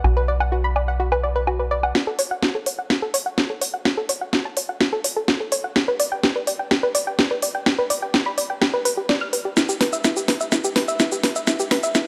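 A soft, round pluck plays arpeggios over a tight, punchy sequencer bass and an up-front electronic drum kit, opening this dark, driving slice of melodic techno cut from a longer piece. The bass, a sawtooth and square-wave tone with a filter pluck and moving notch, sits on B1 under a Bm chord and drops out at 1.9 s. From there the harmony moves through F#m, G and Em while a build-up and drum fill run through to the end at 12.1 s. The layered kit pairs a cracking snare with smooth hats, shaker and woodblock, each low-pass filtered, and has a tape-warm character from being re-recorded in a small room. The nasal, detuned pluck ranges from E4 to E#6, blending triangle, sine and sawtooth with a short decay, chorus and tape echo. A moderate scoring-stage reverb with a high-pass filter gives the mix its space.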